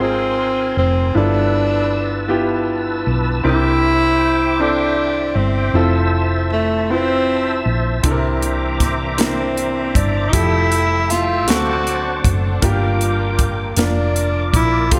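Lightly reverberant and polished, this slow gospel passage in a straight 6/8, cut from a longer piece, feels uplifting and reverent. A breathy, close-miked tenor saxophone carries the melody up front in a jazz style, its scooped notes ringing clear. A clear, natural grand piano accompanies throughout, while a reedy tonewheel organ holds bright sustained chords high above, colored by key click, chorus vibrato and a slow rotary speaker. Beneath them, a round, dark hollow-body electric bass, fingered and amped, anchors the low end. At 8.0 s a crisp fusion drum kit arrives with hi-hat, a tight kick and a medium-tuned snare in an airy studio room, and a lush, woody bowed string section joins at the same moment, its vibrato-rich sustained chords tucked in the background. The harmony is rich with extended chords such as Ab69, G13, C9 and Fmaj9, settling through D7 and Gm7 toward a closing Bb/F.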